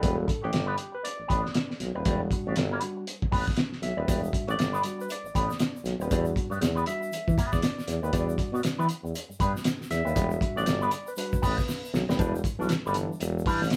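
A cool, sly funk groove at 118 BPM opens at once, with a cloth-damped, thuddy drum kit up front, its fat snare, tight kick and hi-hat sounding muffled and gritty with a rolled-off top. A clear, punchy tuba carries the bass line close-miked and up front, with a light vibrato, while a bright, twangy electric guitar picks clean accompaniment through a wah-like envelope filter. A barky tine electric piano, lightly overdriven through a combo amp, plays stabs and takes the solo spot from the start until 12.2 seconds. A grainy egg shaker enters at 4.1 seconds, sitting in the background. The piece swings its sixteenths in E dorian over an Em7 chord, and a drum fill leads into a new section at 12.2 seconds before this cut from a longer piece ends, all heard as a band playing live in one room with moderate studio reverb.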